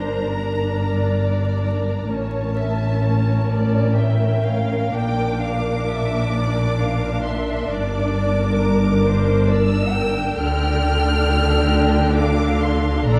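A slow, romantic string-orchestra movement in D minor opens with all five sections together: violins sing a high, expressive melody with soft attack and vibrato, while a second violin line moves smoothly beneath it, sounding more distant. The mood is melancholic and yearning, in 3/4 at around 66 BPM with a rubato feel that lets the phrases breathe. Up front, the violas carry an even, bowed accompaniment, and the double basses sit close and prominent with an expressive, vibrato-laden low end, while the cellos add a focused, lush bass line from further back. The harmony passes from G minor through A7b9 and B-flat before returning to G minor and settling on D minor around 10.4 seconds. A moderate concert-hall reverb surrounds the ensemble, and the dark production carries a vinyl crackle, giving this short cut from a longer piece a nostalgic, aged character.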